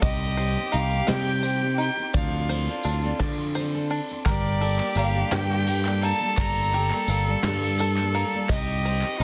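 A dense, heavily limited modern master in a small room carries this wistful, yearning indie folk passage with a building arrangement in G minor, at 57 BPM in 6/8, where a rich, earthy, distant bowed fiddle sings the melody over a nasal, boxy cello second line with light vibrato, alongside a full-bodied jumbo steel-string acoustic guitar with finger squeak in the background, twangy fingerpicked banjo arpeggios, a punchy up-front electric bass, soft brush drums on kick, snare and ride, a jingly vintage tambourine, and a hollow group handclap that joins at 4.3 seconds.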